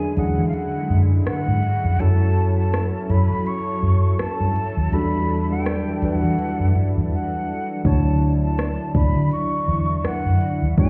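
A breathy, vibrato-laden jazz flute carries the melody through digital delay over a clean tine electric piano and a lush, detuned unison pad that pumps under chorus, setting a dreamy, tender contemporary R&B mood in a swung 4/4. From 0.2 seconds a round, punchy muted bass sits up front with a soft-kicked electronic drum kit of overdriven metallic hats and rim clicks, moving through E13, F#m7, Em11 and Dmaj9 as a break runs until 7.8 seconds. The whole mix sounds muffled, as if heard through a wall into a club's reverb.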